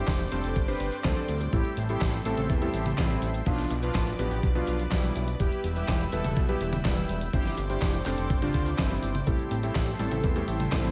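Melodramatic and nostalgic, this short italo disco cut moves at 124 BPM in a straight 4/4, sitting in A minor over a chord cycle that runs from Gsus4 through Am7, Bdim and Em before returning. A brassy, bold analog synth brass carries the melody with chorus and vibrato, its filter-swept tone landing on the mellow side, while a lush unison pad holds sustained chords above it, thick and bright with its own chorus and a slow attack. A fat, detuned sawtooth bass anchors the low end, the loudest of the pitched parts, and a vintage electric grand piano adds short, clangy stabs from the background. The gritty, sampler-style drum kit brings handclaps, hi-hat, toms and a fat snare dressed in gated and studio reverb, alongside a compressed, thumpy electronic kick. Near the end, at 9.3 seconds, a very quiet, punchy unison pluck slips in with brief arpeggios, and a layer of vinyl crackle lends the dry mix a dusty, aged surface.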